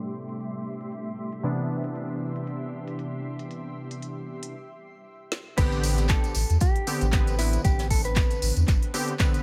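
A deep, late-night deep house cut opens on chorused, detuned sawtooth key stabs with sidechain pumping, tape echo and a filter sweep, over a cloudy, blurred, evolving granular pad, joined at 0.3 seconds by a produced house kit with a woody snare, smooth hats, handclaps and crash. After a drum fill at 5.3 seconds, the drop at 5.6 seconds brings in a round sine sub bass and a deep electronic kick, both up front. With them come a very quiet brushed acoustic kit, a jingly vintage tambourine in the background, and a dark, clean electric guitar melody roughened by 12-bit sampler grit and digital delay, all set in a small room ambience.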